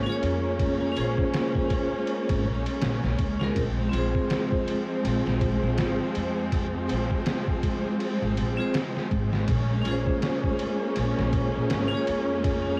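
A dry, home-recorded cassette sound with vinyl crackle frames this brooding, cinematic trip hop fragment in Bb minor, moving at 81 BPM in 4/4 with a 16th-note swing. Up front, a sampler-style drum kit, pitched down, compressed and gritty, pairs a thumpy kick and medium-tuned snare with ride cymbal, its tape-softened tone carrying the feel of a small room; it enters at 0.2 seconds. A woody pizzicato upright bass with steel strings sits low, thickened by tube saturation, while a vibraphone struck with hard mallets rings bright and metallic through tremolo and tape echo, its fast motor vibrato shimmering over the accompaniment. A lush bowed string section, also up front, holds sustained chords with expressive vibrato, portamento and a smooth top. In the background, a flickering, granular texture of detuned tones swells in slowly with its own reverb, as the harmony moves from Bbm7 to Fm at 3.6 seconds and back to Bbm7 at 9.5 seconds.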